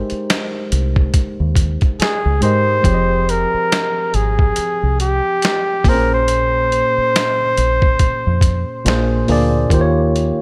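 A warm, punchy flugelhorn enters up front at 2.0 seconds with light vibrato and scooped notes, carrying a sultry late-night neo-soul R&B melody at 70 BPM over a worn, slightly out-of-tune tine electric piano playing Abmaj9, Fm9 and Bbm9 chords, a dark, round, foam-muted fingered bass, and a gritty, pitched-down boom bap sampler kit with a thumpy kick and a 16th-note swing, all set in light digital ambience in this short cut from a longer piece.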